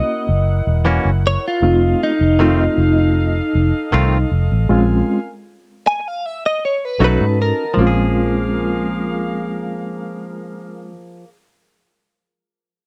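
A dry, close 1970s-style studio sound frames this soulful, brooding blues in Bb minor at 78 BPM, where a bright, compressed clean electric guitar with analog chorus and slapback echo solos for the first 7.8 seconds, breaking for a stop from 4.7 to 7.0 seconds, over a reedy, worn and slightly out-of-tune electric piano pulsing with fast tremolo, a mellow horn section holding soft sustained chords, a dark, round, foam-muted fingered bass up front, and a second, twangy clean guitar punching out stabs.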